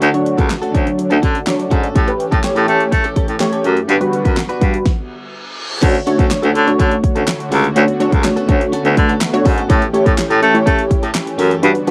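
This upbeat, summery dance-pop excerpt opens with a punchy pop drum kit, a breathy, intimate baritone saxophone carrying the bass line up front, and a funky, detuned sawtooth polysynth comp over a smooth analog pad, both pumping with sidechain and chorus. A bright, twangy clean electric guitar riff sits in the background with lush chorus, and a cassette-tape sheen and light reverb color the whole home recording. Around 4.9 seconds the groove stops for a moment while an electronic reverse cymbal rises in from 5.1 seconds, and from 6.3 seconds crisp, dry group handclaps join the second section.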